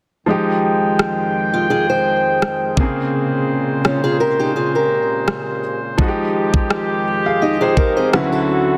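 A clear, intimate baby grand piano with audible action noise and a smooth, lightly vibrato brass ensemble with sidechain pumping open this sensual, moody contemporary R&B passage in F minor at 84 BPM with a light 16th-note swing, moving through Fm9 and Bbm9 to a closing Dmaj9, before a produced trap kit with a knocking kick, rim click and soft-clipped snare arrives at 1.0 seconds and a boxy, fingerpicked archtop guitar adds delayed arpeggios with finger squeak from 1.5 seconds, set in light studio reverb within a dense, heavily limited modern master.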